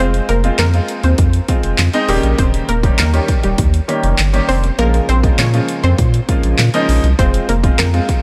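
A straight 4/4 pulse at 100 BPM drives this energetic, bittersweet dance-pop excerpt in F minor. From 0.1 s, a punchy, layered pop drum kit of kick, fat snare, handclaps and bright hi-hats sits up front, with a tape-tinged, small-room character. Beneath it, a round sine sub bass with a fast attack holds deep, sustained notes, pumping with sidechain compression. A clear, polished baby grand piano carries the accompaniment through a lush chorus, also breathing with the sidechain. On top, an evolving analog pluck built from detuned sawtooth, a noise layer and a filter sweep plays the melody with a fast attack and short decay, treated with chorus, delay and pumping, until it stops at 7.9 s. The chords move from Fm to Eb7 and Bbm7 before returning to Fm, set in light reverb and digital ambience.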